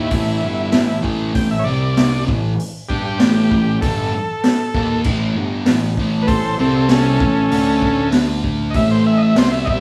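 Raw and rowdy, this 97 BPM garage rock excerpt in 4/4 puts a buzzy, overdriven combo organ up front with a light-vibrato solo melody, over a thick, double-tracked fuzz guitar riff, a dark, round fuzz bass and a punchy raw drum kit with a high-tuned snare entering at 0.1 s, all played live in one room with a moderate large studio reverb, moving through power-chord changes on A5, C5 and D5.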